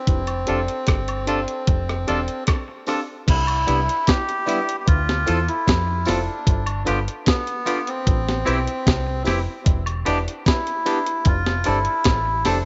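Lightly reverberant with a soft digital ambience and a dulled top end, this sweet, smooth lovers rock reggae fragment sets a reedy, breathy melodica with tape echo over a round, dark fingered dub bass and a thumpy 12-bit drum machine up front, joined by a glassy, bell-like FM electric piano with chorus, phaser and echo, clean twangy electric guitar stabs, and woodblock and tambourine tucked in the background.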